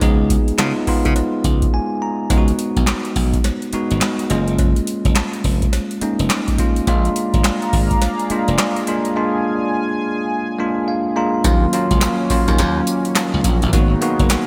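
A swung sixteenth-note groove in 4/4 drives this confident, slick new jack swing cut, taken from a longer R&B piece. An up-front analog drum machine sets the pulse with a deep, booming kick, crisp snare, metallic hi-hats, handclaps and tambourine, its snare, clap and hats carrying a short room and gated reverb. A glassy slap bass plays directly underneath, while a bell-like tine electric piano sits up front with clean, chiming chords and fills, and a very quiet, close cowbell ticks in the background. At 6.9 seconds a chorused pulse-width pad enters with slow-attack, detuned, shimmering sustained chords, and a short break at 1.7 seconds leaves room for an electric piano fill. The bright 1980s-style digital production wraps the parts in light reverb and digital ambience as the harmony moves from dominant and suspended chords toward minor sevenths.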